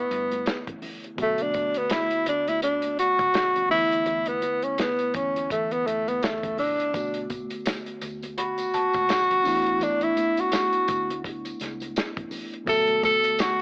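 Cinematic and silky, this fragment of lush 1970s-style soul moves at 84 BPM in 4/4 with a gentle sixteenth-note swing, drifting between E7sus4 and Bm7 as a breathy, whispered tenor saxophone takes an intimate, jazz-style solo up front, its scooped notes and vibrato gliding over a mellow tine electric piano heard through its built-in speakers. Beneath them sit a dark, round, foam-muted fingered electric bass and a delicate, bell-like celesta that sounds sweet but slightly out of tune, while a dry, muffled soul drum kit with a tight kick and a rolled-off top carries a cassette-tape grit. Very quiet, high-tuned congas add a bright tap, a jingly tambourine joins at 7.0 seconds, and the whole piece wears a lo-fi home-cassette, AM-radio sheen under light reverb.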